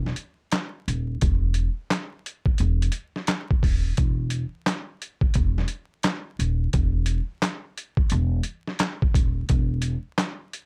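Gritty and tough, this short boom-bap hip-hop cut from a longer piece swings its sixteenths as a compressed, pitched-down sampler-style kit of thumpy kick, medium-tuned snare, handclaps and hi-hat sits up front with tape-tinged grit beside a woody, plucked steel-string upright bass holding low around D#1 to E1, all dry and dusted with vinyl crackle, moving into a new section at 4.0 seconds.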